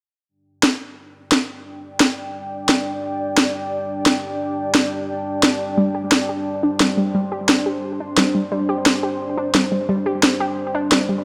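A lush hall reverb surrounds this mechanical, dark excerpt of technical drum and bass, cut from a longer piece and moving at 175 BPM in a straight 4/4 over a G5 chord. An up-front electronic snare drum enters at 0.6 seconds, its layered, produced crack driving the track as the loudest part. At 1.7 seconds a deep, moody ambient pad arrives with sustained chords, built from detuned sawtooth unison and a sine sub octave, with a slow attack, long release, chorus and its own reverb lending it a brooding weight. From 5.8 seconds a warbly, dusty pluck adds arpeggios in a lower register, its lo-fi sawtooth tone carrying a noise layer, a filter sweep, chorus and delay. The pluck's short, fast-attack notes sound mellow and evolving, giving a faded, warm texture against the dark pad and the hard snare.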